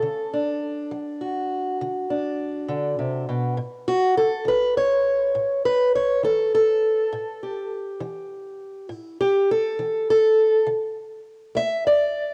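Swaggering and laid-back, this short cut from a longer acoustic country blues piece moves at 68 BPM with a straight 12/8 feel in A mixolydian, with a single fingerpicked archtop guitar up front, boxy and warm with fresh strings, running from D to A7 and landing on D5 at 10.7 seconds, all caught on a cassette home recording with light reverb and a small room's ambience.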